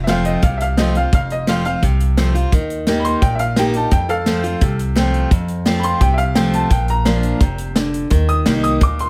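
Heartfelt and sunny, this brief honky-tonk and classic country excerpt features a clear, open upright piano soloing across the whole passage over up-front, bright picked steel-string acoustic guitar, a thumpy pizzicato upright bass and a natural country drum kit with a punchy kick, medium-tuned snare and hi-hat, all captured with close, detailed microphones and little reverb as the chords move from F to Eb, back to F, then to Bb and Eb.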